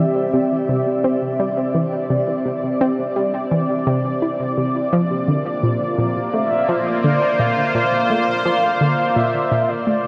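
Drenched in a huge ambient reverb and colored by worn, warbling cassette tape with wavering pitch drift, this cosmic, luminous fragment of sequencer-driven space music moves at 85 BPM in 4/4 in Bb lydian. An evolving, detuned resonant pad sweeps through sustained chords with a slow filter swell, chorus and shimmer reverb, while a round sawtooth analog pluck plays a fast-decaying riff through chorus, shimmer reverb and tape echo, both sitting up front as the harmony shifts from C to Bbadd9 at 4.9 seconds. At 6.3 seconds a mellow, horn-like synth lead enters with a soft, vibrato-laden melody treated with chorus, phaser, shimmer reverb and tape echo, before the piece fades out from 8.7 seconds.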